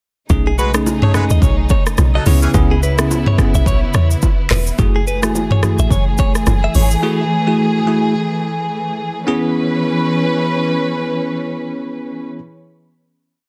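Smooth and mellow, this short afrobeats piece in C# minor moves at 107 BPM with a swung sixteenth-note feel, led up front by a deep, round log drum bass and an electronic afro-pop drum kit whose soft kick, crisp hats, syncopated rim clicks, shaker, handclaps, toms and softly clipped snare are joined by very quiet, vintage-toned congas and bongos until those three parts drop out near 7 seconds. A bell-like tine electric piano plays syncopated chords over an intimate, bowed string section sustaining a pad with vibrato, while a bright, twangy clean electric guitar repeats an interlocking figure through digital delay and a horn section adds short pop-style riffs only until 2.5 seconds. The harmony moves from B13 through C#m7 and F#m9 before settling on a held C#m7 final chord, all within digital ambience and a dense, heavily limited master.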